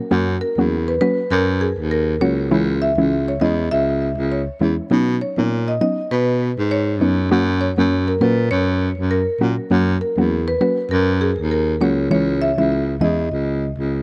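A breathy baritone saxophone carries the bass up front with vibrato while a soft, round pluck with chorus plays the accompaniment, and from 0.4 s a woody marimba with medium mallets adds the melody through digital delay, shaping this sunny, bouncy dancehall excerpt at 100 BPM with a lightly swung 16th-note feel, moving over F#, C#m and Badd9 in a dark, warm production with a small room ambience.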